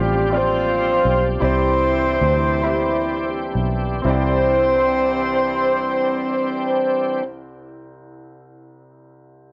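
Captured at home on cassette in a booth, this soulful, uplifting gospel excerpt in 6/8 and C major moves at 39-58 BPM and slows through its first 4.0 seconds over a G7sus4 to Cmaj9 change. A tight, up-front horn section carries the melody in octaves with light vibrato, and a shouting, lightly overdriven tonewheel organ with key click and slow rotary speaker holds sustained chords. A round, foam-muted fingered electric bass sits beneath, and a woody upright piano accompanies from the background, ringing on alone from 7.3 seconds, once the others have stopped, until 9.5.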